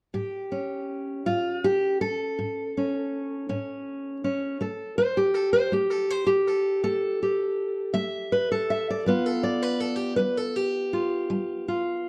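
Acoustic country blues with a swaggering, laid-back mood, moving at a slow 54 BPM in a 12/8 metre with a straight feel. A lone fingerpicked steel-string acoustic guitar carries the whole piece from 0.1 to 12.1 seconds, ranging from A2 up to E5. The dreadnought guitar sounds full-bodied and up front, pairing fresh strings with a dark tone. The harmony rests on A7 before shifting to G7 at 9.1 seconds. Light reverb and a dark, warm production frame this short passage, which is cut from a longer piece.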